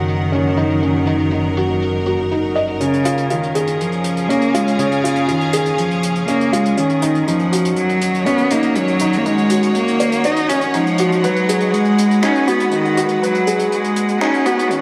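Piano and strings electronica with a cinematic, melancholic mood, this excerpt sets a smooth, rich solo cello melody up front over a mellow, woody upright piano riff with audible action noise, both bathed in shimmer reverb, with digital delay on the piano. A bright, intense symphonic string section holds distant bowed chords, while a dark bowed double bass section sounds only until 2.8 s. A warm jazz brush kit of finger snaps and hi-hat with a rolled-off top enters at 0.1 s, and from 2.8 s the music builds through Db, Ebm7 and Abm7 in a reverberant small-room space.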